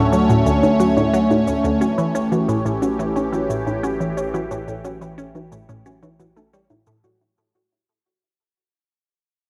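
A straight 4/4 pulse at 89 BPM carries this cosmic, mysterious stretch of sequencer-driven space music, cut from a longer piece and fading out throughout as the harmony moves from Dmaj7 to A7 at 1.8 s. Up front, a swirling, bright phased analog pad holds sustained chords through phaser, chorus and plate reverb, while a juicy, squelchy blip pluck drives a resonant riff through phaser, delay and cassette tape, and a soft, round pluck traces gentle arpeggios in the background with chorus and delay. A deep analog bass sits low and dark beneath, and dry, overdriven electronic cabasa and bongos enter at 0.1 s, all wrapped in a wet digital room ambience with a home-cassette character.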